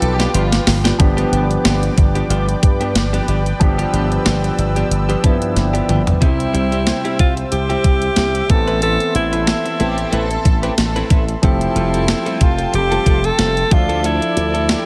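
This moody, nostalgic excerpt of 1980s-style pop at 92 BPM opens with a thumpy drum-machine fill with gated reverb, over a growly, punchy slap bass with an envelope filter, a brassy detuned analog pad with chorus, a compressed clean electric guitar riff, an intimate concert grand piano in the background, and a brief delayed phrase from a reedy, gut-string violin section, before a bright alto saxophone with vibrato takes the melody up front at 6.2 s and the violins return at 9.8 s.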